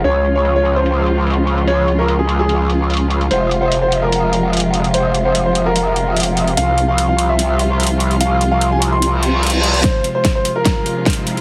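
A downlifter opens this heavy, menacing wobble dubstep passage as a boxy concert grand piano carries the melody with long sustain and tape echo, over veiled, muted chamber strings holding bowed chords with vibrato, sidechain pumping and a low-pass filter. Beneath them a growling, saturated bass wobbles through a formant filter with overdrive and chorus, bright and up front, while a filtered dubstep kit adds a huge snare and metallic hats in a half-time feel at 147 BPM in F minor. The harmony moves from Db to F minor to Csus4 before returning to F minor. A reverse cymbal arrives at 9.2 seconds. At 9.8 seconds the bass drops out and a punchy electronic kick enters for the build-up, with a drum fill and riser pushing toward the cut. The mix sits in a moderate digital room and has a heavily compressed, radio-like sound, and the passage is cut from a longer piece.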